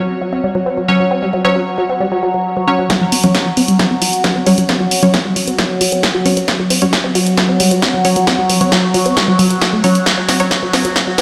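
A straight, driving pulse takes hold once the drums arrive at 2.9 seconds, pushing this dark, hypnotic slice of peak-time techno into a build-up that runs to the end of the cut. Before that, a squelchy, resonant blip pluck riff carries a sawtooth-and-triangle bite, tube saturation, ring modulation, a phaser and dub echo, pumping against the beat. Beneath it an overtone-sweeping drone swells in slowly and sustains, its shifting harmonics softened by chorus, phaser and its own built-in reverb, while crisp, bright wavetable chord stabs enter at 0.9 seconds with detuned unison and dub echo trailing behind. The punchy analog drum machine brings a tape-warm snare and hi-hats forward in the mix, carrying a drum fill as filter sweeps open up the pluck riff and the stabs, and a layered electronic kick sits further back in the blend. The whole piece is steeped in a huge ambient reverb that sounds like a big sound system playing in a bare stone room, giving the sound a cavernous, rave-ready depth.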